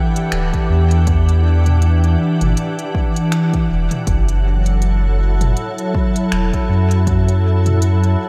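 A light reverb and digital ambience frame this short, hazy ambient dub fragment, moving at 80 BPM in E minor with a swung 16th-note feel as the harmony shifts from Em9 to F#m7 at 4.1 seconds. A pure, organ-like pad with slow attack, ensemble chorus and its own reverb holds bright, calm chords up front, while a round, sine-based sub bass sits deep and mellow beneath it. An overdriven electronic kick and a quieter organic electronic kit of finger snaps, smooth hi-hats and toms, treated with studio reverb and dub echo, keep a meditative pulse until the kick drops out at 7.2 seconds.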